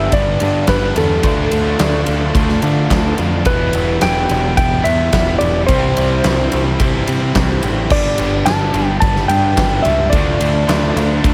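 A dark, compressed lap steel slide carries the melody from the first moment of this swaggering, driving classic rock excerpt, over a shimmering, very quiet picked twelve-string acoustic and a lush vintage string machine that is barely audible. Three overdriven electric guitars play riffs: a cranked stack guitar in the background, a double-tracked crunchy guitar and a hollow-body semi-hollow, both very quiet. A growling, overdriven picked bass and a huge arena drum kit, entering at 0.1 seconds with a fat snare, punchy kick and bright crash and ride cymbals up front, drive the chords from G through Dm, Em and C, all set in studio reverb.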